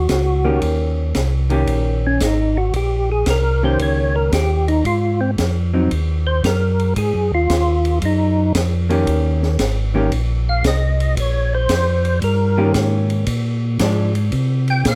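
Greasy and swinging, this soul jazz organ trio cut from a longer piece rolls along at 114 BPM in Eb mixolydian, with a percussive, fat tonewheel organ taking the lead solo through slow rotary speaker and chorus vibrato, its key click up front. Beneath it, a second tonewheel organ carries the bass in a round, mellow voice, also spun through a slow rotary, while a dark, clean hollow-body jazz guitar adds picked accompaniment from 0.4 to 14.1 seconds. An open acoustic drum kit with dusky cymbals, a high-tuned snare and a boomy kick sits lower in the mix, all captured by close, detailed microphones with little reverb over changes that move between Ab7 and Eb7 before a turn to Bb7.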